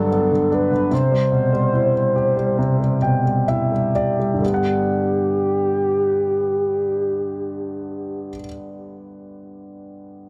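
Tender and emotional, this slow pop fragment in G major (61-77 BPM) eases back in tempo over its opening seconds as an intimate concert grand piano, with deep bass, long sustain and audible action noise, plays Gmaj7 and Cmaj7 chords and adds a fill from 2.6 to 4.4 s, while a round, horn-like vintage sawtooth synth lead with a soft attack, vibrato and a warbling chorus carries a mellow melody up front until 8.4 s, leaving the piano to ring on to 10.3 s in light studio reverb within a dense, heavily limited modern master.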